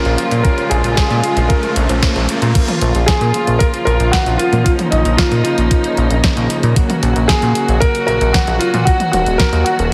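A straight 4/4 pulse at 114 BPM drives this melodramatic, nostalgic Bb minor italo disco clip, where a thumpy, sampler-style kick and a punchy, layered house kit sit under a glossy, nasal chorused synth bass up front, dark, woody strings hold bowed chords with gritty 12-bit character, a polished baby grand carries the melody through delay, and a worn, slightly out-of-tune tine electric piano adds phased, tape-echoed stabs beside a background riser during the opening 2.5 seconds, the mix framed by lush hall reverb and a heavily compressed radio sound.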